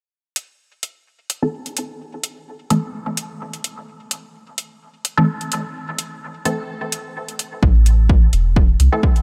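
Lightly reverberant and hazy, this deep dub techno excerpt in A minor at 128 BPM with a gentle 16th-note swing opens on metallic electronic hi-hats at 0.4 seconds, is joined at 1.4 seconds by a muted, detuned sawtooth chord stab with a filter pluck, phaser and dub echo, and then, at 7.6 seconds, gains a punchy electronic kick and a round, soft sub bass with sidechain pumping, both sitting up front, while the hats and kick share overdrive and studio reverb.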